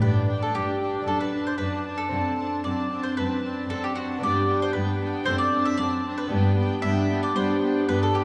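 This brilliant, lively fragment of a baroque-style concerto movement opens at once with the full ensemble in G major at 114 BPM in a straight 4/4. A picked mandolin carries the melody up front, its double strings giving a round tone, while a studio violin section also plays melody high above in the background with a smooth, nasal top. A chamber violin section holds a second line close by, and a chamber viola section fills the harmony with a reedy, gut-string sound. A bright, delicate fingerpicked lute adds accompaniment with some octave-doubled strings, and a rich cello section anchors the bass up front with period-style light vibrato. The harmony moves between G and D7 over F#, and the whole 8.2 seconds sits further back in a scoring stage with a wet, lingering reverb.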